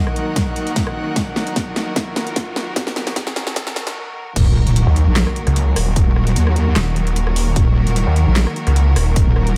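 Dry, with a high-pass filter thinning the low end, this aggressive, menacing heavy wobble dubstep excerpt in Eb minor moves at 150 BPM in a half-time 4/4 feel, cut from a longer piece and resting on an Ebm chord. It opens on a build-up, where a rich, smooth studio string section holds sustained chords with vibrato, coloured by vintage 12-bit sampler grit and sidechain pumping, while an airy, breathy pad with chorus floats in the background until 4.0 s. A dubstep drum kit with a huge snare, metallic hats, handclaps, rim clicks and crash cymbal plays a fill through the build alongside a punchy, tape-warm electronic kick, both set in small room ambience, as a filter sweep runs and a very quiet riser and impact sit beneath. After a short break, the drop lands at 4.4 s with a heavy wobble bass, saturated and up front with chorus and overdrive, spanning Eb1 to Eb2. At 4.9 s a snarling, growling distorted saw bass with a moving notch joins it in the same register, giving the drop its snarl.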